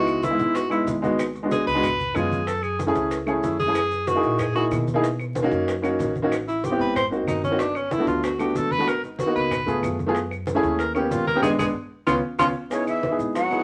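Driving and sultry, this excerpt of up-tempo Afro-Cuban jazz at 188 BPM opens on a clear, present tenor saxophone solo over a natural-sounding baby grand piano, woody pizzicato upright bass and a background bed of low-tuned congas, tight high-tuned bongos, claves and grainy maracas, with a band accent arriving at 11.4 seconds, a drum fill, and a breathy, expressive flute with vibrato stepping up front at 12.7 seconds, all wrapped in moderate studio reverb and vinyl crackle.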